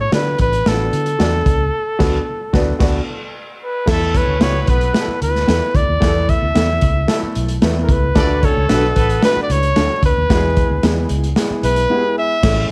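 Uptempo 1960s-style soul with a danceable, straight 4/4 feel, led by an up-front clear trumpet melody with vibrato over a crunchy, saturated breakbeat kit, a round foam-muted fingered bass, a dark, worn grand piano with audible action noise, and mellow tremolo guitar stabs in the background, with a vintage horn section adding a second line from 3.9 to 9.5 seconds in a small room, and a band accent and a closing piano fill.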